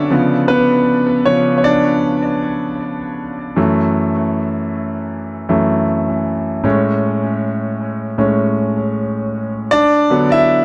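Late-night and sensual, this slow R&B excerpt in F# minor moves at 78 BPM with a gentle 16th-note swing, carried entirely by a solo concert grand piano spanning F#2 to F#5. The piano sits up front with a smooth, vintage character and deep bass, its lines trailing into dub echo within light reverb and small-room ambience. The harmony drifts from C#7b9 to F#m7 at 3.6 seconds, then to Amaj7 and finally D69 at 9.7 seconds.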